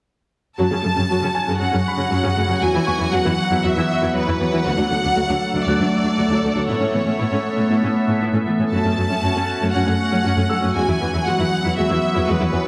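A wet scoring-stage reverb surrounds this tense, relentless cinematic excerpt in F# minor at 118 BPM, where an up-front, focused violin section carries the melody over a clear, intense viola section and a lush, smooth cello section holding the bass, all entering at 0.6 seconds. An evolving, detuned wavetable pad with phaser and its own reverb joins at 1.2 seconds with sustained chords, and a brilliant baby grand piano with digital delay adds high texture in the background from 1.3 seconds, its action noise audible. The harmony moves through F#m, Eadd9, D and Aadd9 before returning to F#m and Eadd9.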